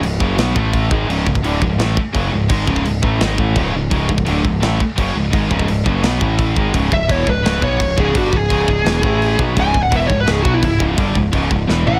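Relentless and epic, this heavy metal excerpt charges at 170 BPM in C# phrygian, with a bright scooped high-gain guitar, a compressed distorted guitar in the background and a very quiet double-tracked fuzz guitar stacking the riff over a growling, punchy overdriven bass and a tight, up-front drum kit with a rolled-off top. The chords cycle mainly between C#m and A5, and at 6.9 seconds a dark, high-gain lead guitar steps forward with a solo. A drum fill at 11.7 seconds closes the passage, all set in light reverb.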